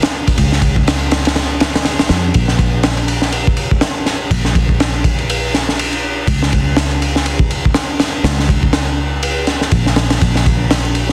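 Breakbeat with a gritty, funky mood and a swung sixteenth-note feel, cut from a longer piece and running about 11.1 seconds. A crunchy acoustic drum kit sits up front, with a punchy kick, a high-tuned snare and dark ride cymbals, and its saturated, rolled-off sound carries a smooth grit. A fingered electric bass plays throughout beneath it, round and foam-muted, in a dry, dense and heavily limited mix dusted with vinyl crackle.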